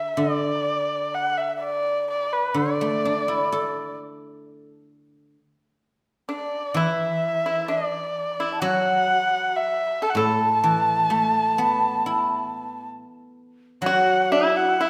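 A dark, woody erhu opens this festive, graceful excerpt of Chinese traditional chamber music, its single bowed voice up front and singing the melody with vibrato, portamento and a smooth top. Beneath it, a guzheng played with fingerpicks rings out with a silvery, warm tone in the lower range, also close at hand as the accompaniment. The tempo is an unhurried 64 BPM in a straight 4/4, set in an A zhi mode. At 6.3 seconds a dry, percussive pipa, also plucked with fingerpicks, enters with a second line in the middle register. At 13.8 seconds, as a new section begins, a breathy, mellow bamboo xiao joins with a brief tongued, end-blown line touched with vibrato and rolled-off highs. The ensemble sits in a wet recital hall reverb that lends the small group a sense of space.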